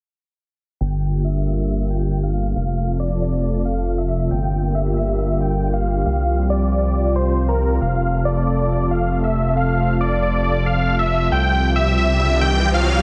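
Trance, euphoric yet bittersweet, this clip from a longer piece moves in a straight four-four pulse over a Gm7, F and Csus4 progression. A huge, detuned supersaw lead carries the melody up front from 0.8 seconds, bright and compressed, with a low-pass filter sweep and dub echo shaping its sustained lines. Beneath it, a lush, thick unison pad holds chords from 1.0 seconds, its slow attack and long release softened by chorus and its own filter sweep. The gritty, aggressive synth bass sits loudest in the mix, an evolving tone run through tube saturation. An electronic riser enters in the background at 11.7 seconds, while light reverb and a dense, heavily limited modern master with a filter sweep over the whole mix shape the overall sound.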